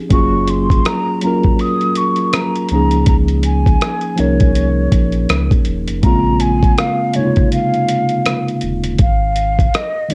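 A cassette-tinged, lightly reverberant lo-fi hip hop excerpt at 81 BPM in Db major with a swung, cosy and nostalgic feel, where a gritty, compressed sampler-style drum kit with a thumpy kick, hi-hat and rim click sits up front beside a clean, mellow tine electric piano playing Gbmaj9 and Db69 chords, a deep, full sub bass with octave sustains beneath, and a breathy, hollow jazz flute with vibrato carries the melody from a distance.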